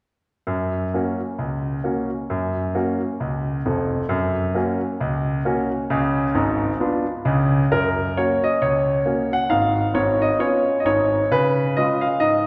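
Stride jazz with a playful, swinging lilt, this short excerpt features a solo concert grand piano, polished and up front with deep bass and short sustain, moving through a chord change at 5.9 seconds and a new section at 7.7 seconds while a concert hall's wet reverb blooms around every note.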